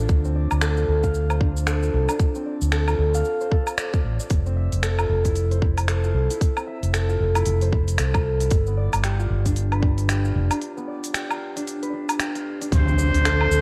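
Organic downtempo in D dorian at 114 BPM with a 16th-note swing, this earthy, hypnotic passage cut from a longer piece sets ringing, thumb-plucked concert harp arpeggios through digital delay over a dark, round fretless bass with sidechain pumping, a tight electronic kick and a kit of cabasa, finger snaps, smooth hi-hat and woodblock, all under light reverb and the warbly pitch drift of worn cassette tape, moving through Dm7, Fmaj7 and G7 into a break at 10.6 seconds before a brilliant, wah-wah plunger-muted trumpet with vibrato and a background electronic impact arrive at 12.7 seconds as the kick stops at 12.8 seconds.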